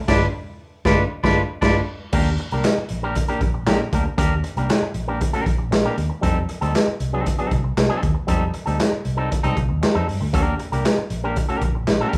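A raw, gritty garage drum kit with a punchy kick, dark cymbals, snare, hi-hat, crash and handclaps drives this playful, energetic funk piece at 117 BPM alongside a bright, twangy envelope-filtered electric guitar accompanying up front over a round, foam-muted vintage fingered bass, while a clear baritone saxophone with vibrato adds brief, punchy lines at 0.1 s and 9.4 s amid full-band accents, the chords moving from G9 through Ebmaj7 and F9 in a rough home-demo mix with a wet small-room sound.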